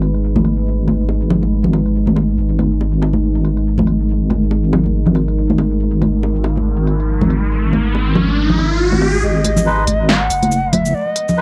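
Heavy and brooding, this short deep dubstep passage moves at 140 BPM in a half-time feel with a swung sixteenth-note groove, sitting on a single G# minor chord. A deep, dark pad of detuned sawtooth layers with a sub octave holds sustained chords from the start, its slow attack and long release softened by chorus, built-in reverb and a tape haze. Beneath it, an up-front wobble bass with a detuned square-and-sine tone hovers low and compressed, while a layered electronic drum kit with a punchy snare and smooth, muffled hats, re-recorded in a small room, is joined at 0.4 seconds by bright, close congas and bongos trailing dub echo. An electronic riser builds from 6.8 seconds, and at 9.2 seconds a breathy, end-blown bamboo shakuhachi with vibrato and a chiffy attack takes the melody up front, soon met by reedy, nasal melodica stabs through filtering and echo. The whole piece has the intimate feel of a home cassette recording, with light reverb and a faint mains hum.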